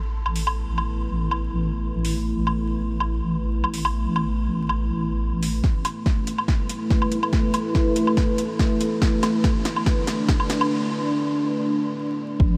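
Soaked in a huge, dreamy reverb with vinyl crackle, this heavy, meditative deep dubstep excerpt from a longer piece opens with a filter sweep on a moody, detuned sawtooth pad holding sustained chords over a sine-and-triangle wobble bass, while an overdriven house kit of punchy snare, metallic hats and woodblock enters at 0.3 s, a deep, up-front electronic kick joins at 5.6 s for a build-up and drum fill, and a break follows from 10.7 s.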